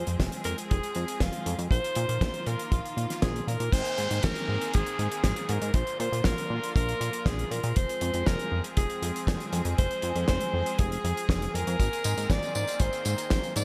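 Italo disco in a straight 4/4 pulse, this bittersweet, melodramatic excerpt sets an edgy alto saxophone up front, singing the melody with vibrato, scooped notes and tape echo over bright, distant symphonic strings holding bowed chords with light vibrato. A glossy, chorused synth bass with a fast filter pluck drives beneath, joined by a tight, dry kick and a damped 70s kit whose fat snare, hi-hat, crash and tambourine sit in gated reverb. An electronic downlifter drifts in the background from 3.7 to 7.8 seconds as the chords move from Fm through Abadd9 and Bb.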